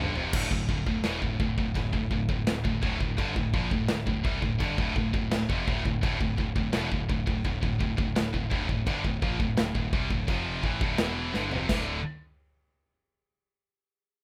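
A rough home-demo mix with light reverb opens this relentless, epic heavy metal excerpt in D minor at 84 BPM, where two bright, high-gain distorted guitars, one heavy and one scooped, play up-front riffs over a growling, overdriven picked bass sitting in the background and a punchy, up-front acoustic rock kit of china, crash and splash cymbals, toms and a medium-tuned snare, with drum fills at 0.0 and 11.4 seconds before the harmony moves from Dm to D5 at 11.7 seconds.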